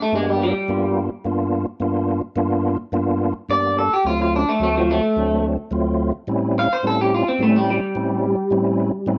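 A twangy electric guitar played through a small old amp opens this laid-back, soulful blues excerpt at 0.0 seconds, taking the lead with a picked, slightly broken-up, lo-fi solo that carries a subtle chorus. A moment later a fat tonewheel organ joins underneath as accompaniment, lightly overdriven, with audible key click, chorus vibrato and a slow rotary speaker. The groove sits at 108 BPM in a straight 4/4, tuned to A4 = 435 Hz. The harmony moves from G7#9 to D7#9 at 4.1 seconds and on to A7#9 at 6.3 seconds. Both guitar and organ sit up front in a moderate studio ambience, giving the short passage a warm, intimate, soulful character.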